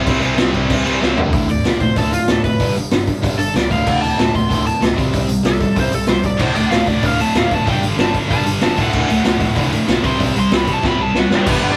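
A straight 4/4 punk rock beat drives along at 190 BPM, led by an up-front raw garage drum kit with a punchy kick and a gritty, saturated edge, while a picked electric bass sits low beneath three distorted rhythm guitars churning the riff: a tight one, a sludgy overdriven one, and a scooped, double-tracked high-gain part that drops out after the opening and returns at 6.4 s. After a drum fill, a crunchy overdriven lead guitar tears into a bright, rebellious solo from 1.3 s over chords moving among D5, G5 and C5, with another fill near the close of this upbeat rehearsal-room recording set in a small room's reverb.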